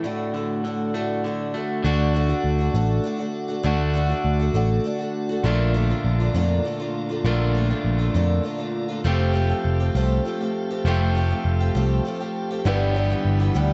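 Rock in a nostalgic, open-road mood at 67 BPM in a straight 6/8, this dark-toned excerpt opens with a brief break of shimmering, octave-doubled twelve-string acoustic guitar and a twangy, slightly broken-up electric guitar riff with spring reverb. An up-front, amped electric bass and a piping tonewheel organ on a slow rotary speaker set back in the mix join at 1.8 seconds, moving through D/A, Bbmaj7 and Fadd9 to G6. A worn, slightly detuned upright piano slips in a second line at 12.7 seconds.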